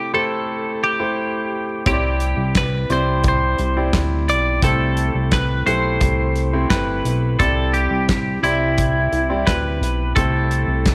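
The recording sits in light studio reverb, framing a hopeful, piano-driven pop excerpt in C major at 87 BPM in a straight 4/4. A bright, twangy twelve-string electric guitar carries the melody through spring reverb and slapback echo, while a brilliant, polished concert grand piano with deep bass accompanies over Am7 and Cadd9 chords. At 1.9 seconds a dark, glossy chorused synth bass enters alongside a modern drum kit with a tight kick, snare, hi-hat and handclaps in a small-room sound.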